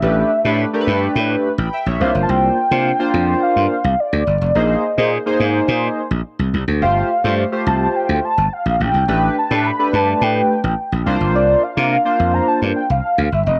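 A straight 4/4 groove at 106 BPM drives this slick, danceable slice of early-eighties boogie funk, cut from a longer piece. A bright, growly slap bass sits up front, its direct, amped tone punchy from the opening through 13.6 seconds. Over it, a glossy chorused polysynth built from pulse and sawtooth waves with pulse-width modulation and a filter sweep holds sustained chords through 12.8 seconds, its retro sheen set in plate reverb. A velvety synth lead carries the melody, its detuned unison sawtooth and triangle tones smoothed by chorus, vibrato and a cassette-tape character. The harmony moves through suspended ninth chords, from A9sus4 to C9sus4, Bb9sus4 and G9sus4 before returning, and the whole sits in a moderate studio reverb with the grain of a home cassette recording.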